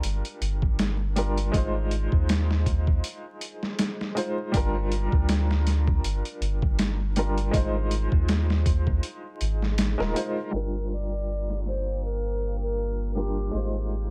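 Smoky and hypnotic, this trip hop excerpt in G phrygian sits at 80 BPM with a swung sixteenth feel, as a gritty, overdriven sampler-style boom bap kit with a thumpy kick and high-tuned snare sits up front beside a deep, round dub sub bass, while a woody upright piano with tremolo and tape echo circles between Gm7 and Ab6. After a break from 9.0 to 10.5 seconds, a filter sweep moves over the piano as a reedy baroque flute with vibrato and tape echo carries a short melody, and at 11.6 seconds a dark, moody pad with chorus and reverb settles in the background. The whole mix is steeped in echo, vinyl crackle and a low-pass haze.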